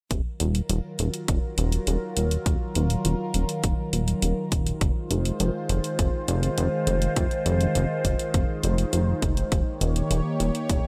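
Nostalgic and cinematic, this synthwave passage, cut from a longer piece, moves at 102 BPM in a straight 4/4 and sits in Eb dorian, tuned to A4 = 444 Hz. A glossy, up-front synth bass built from pulse and sawtooth waves holds low between Eb1 and F1, its filter pluck and fast attack giving each note a defined edge while sidechain pumping makes it breathe with the beat. From 0.6 seconds a swirling, detuned sawtooth pad arrives with a slow attack and long release, its bright sustained chords shimmering through phaser and chorus and pumping in the same sidechained way. A punchy, layered electronic kick drives the groove alongside a sampler-style hi-hat with a tape-warm, small-room character. The harmony moves from Ebmadd9 to Fm7 at 4.8 seconds and lands on Eb7 near the end, all framed by light reverb and digital ambience in a bright 1980s-style production.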